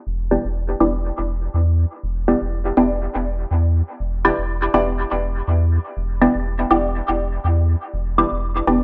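A muted, detuned filtered dub chord stab features in this meditative, cavernous dub techno excerpt, entering at 0.3 seconds with plucky sawtooth-and-square stabs that evolve under a phaser and trail off into dub echo. Beneath it, a round, sine-like sub bass sits up front from 0.1 seconds, its tube saturation giving it a deep warmth. The lightly swung 4/4 groove plays out in an echo-heavy mix with only light reverb.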